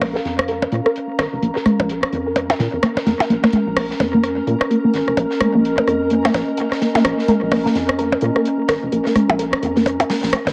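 Minimal techno with a quirky, hypnotic feel and a swung groove, built on a juicy, squelchy blip pluck riff carrying a filter sweep, phaser, chorus, cassette tape colour and analog delay, over a rubbery, hollow square bass, an up-front click kit of percussion blips, rim clicks and toms, a dry acoustic kit's hi-hat and high-tuned snare sitting low in the mix, a flickering grainy texture in the background and a nostalgic, lo-fi warbling pad, all held in a moderate spring reverb and an echo-heavy mix.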